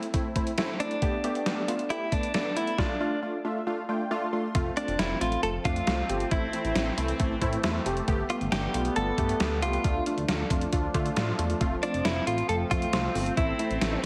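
Melancholic and driving, this 136 BPM synth-pop passage in 4/4 opens with round, detuned analog keys with chorus and a gated 80s drum machine with a thumpy kick and gated-reverb snare, then a clean, direct-recorded electric guitar carries the melody through analog delay from 0.8 seconds, and at 4.5 seconds a smooth, dark sawtooth synth bass and a bright, evolving resonant pad with chorus join over a cycle of Am, Gadd9, Dm and F, the mix set in a moderate digital room with a heavily compressed radio sound.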